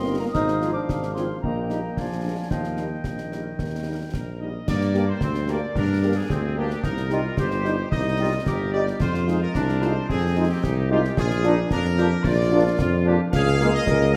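Bathed in a wet stage reverb, this festive, proud military-style march for wind band is cut from a longer piece, with a clear, distant trumpet section carrying the melody over a punchy, up-front tuba bass line and close, dry concert snare drum, dark clash cymbals and concert bass drum. A pure, hollow piccolo with vibrato and a euphonium solo add second lines only until 4.1 s, while a soft-attack woodwind section adds its own line throughout and a very quiet French horn section supplies accompaniment. From 5.0 s a dark trombone section sits in the background with sustained chords as the march moves into a new passage.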